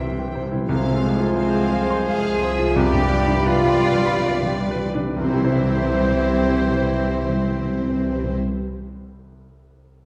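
In a rubato triple metre that slows through its first 5.2 seconds, this lyrical, lush romantic excerpt for piano and orchestra sets a clear, up-front grand piano melody over symphonic strings: warm vibrato violins carry the tune above a very quiet second violin line, a rich viola section accompanies, and an intense cello section and distant double bass section hold the bass, while a pure flute section, an oboe, a mellow clarinet and a bassoon add soft-attacked lines, dark trombones and roomy French horns hold faint chords, a trumpet adds stabs, and hard-mallet timpani fills and a barely audible tam-tam round out the orchestra before the piano rings on alone after 8.6 seconds in a wet recital-hall reverb heard from further back.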